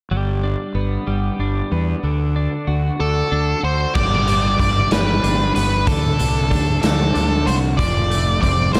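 A dark, distorted octave-fuzz lead guitar steps up front at 3.0 seconds with a picked melody between A4 and D5, driving this cathartic, restless slice of quiet-loud alternative rock in 6/8. Beneath it, a clean, compressed twelve-string electric guitar plays arpeggios from the start, colored by analog chorus and slapback echo, while a growly, overdriven fingered bass with fuzz sits up front. The raw garage drum kit arrives at 4.0 seconds as the second section begins. Its punchy kick, medium-tuned snare, hi-hat and crash cymbal sound saturated and gritty, with a rolled-off top, in a bright stone room. The chords move between G and D before landing on F near the close, and a lush hall reverb gives the mix a big arena sound in this excerpt cut from a longer piece.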